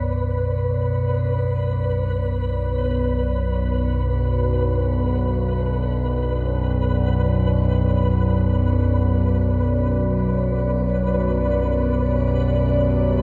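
In free time, this cavernous, dark ambient drone in B minor, cut from a longer piece, rests on an up-front analog drone, nasal and evolving with pulse-width modulation and chorus under a filter sweep, while a deep, moody pad of detuned sawtooth and sine layers with ring modulation holds sustained chords through shimmer reverb. A flickering, grainy granular texture hovers above, and barely audible bronze gamelan-type bossed gongs, played with padded beaters, sound arpeggios until 6.0 s. The harmony shifts from Bm to Gmaj7#11/B at 8.5 s, set in a huge reverberant space with a cassette tape character.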